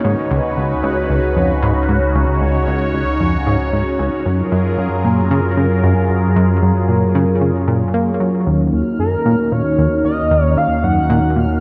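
A straight 4/4 pulse at 114 BPM drives this hypnotic, mysterious stretch of sequencer-driven ambient space music, where a punchy, funky analog bass riff with delay and a deep, round sine sub bass sit beneath a swirling, detuned sawtooth pad treated with phaser and chorus, a bubbling, resonant stepped-filter texture murmurs in the background, and a shimmering, retro pulse-width lead with vibrato, chorus and delay enters up front at 9.0 s, the music heard in a wet concert-hall reverb over chords moving from Db7sus4 to Gbmaj7 and Ebm7.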